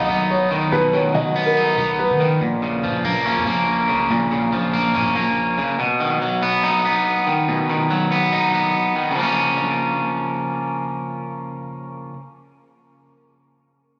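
A half-time drill pulse at 142 BPM in 4/4 drives this menacing, dark hip hop fragment in Bb phrygian, its harmony moving between B and Bbm. A boxy, dark-toned baby grand carries a brief melody with digital delay until 2.2 seconds, while a deep, sine-like 808-style bass with a fast attack and long decay sits mellow in the background until 5.6 seconds. Up front, a bright, twangy, picked electric guitar at the edge of break-up holds the accompaniment through 12.2 seconds, all caught on a phone in the room with compression and a light studio reverb.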